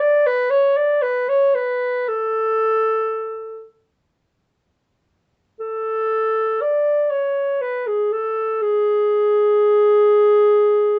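A dark, roomy solo clarinet sits up front in this serene, lyrical classical fragment in A major, moving freely with rubato through a slow 6/8 at roughly 27-44 BPM in dotted quarters, staying between G#4 and D5, turning to a new section at 5.6 seconds and ending at 11.0 seconds, all wrapped in moderate studio reverb and a mellow production that keeps the top end soft.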